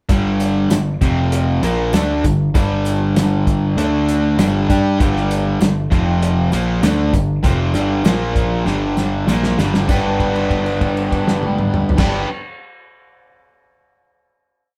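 A band playing live in one room, caught with moderate studio reverb, delivers a short, driving and confident classic rock piece at 98 BPM, with two overdriven electric guitars up front, one crunchy and bright and the other warm, both picking a power-chord riff around G5, F5, D5 and Bb5. An overdriven picked bass, dark and round, doubles that riff in driving eighth notes, while a cloth-damped, thuddy acoustic kit with a fat snare, tight kick and dark cymbals plays a pop groove, and a jingly tambourine sits in the background. A drum fill at 8.7 seconds leads into a final G chord at 9.9 seconds, held until 12.0 seconds.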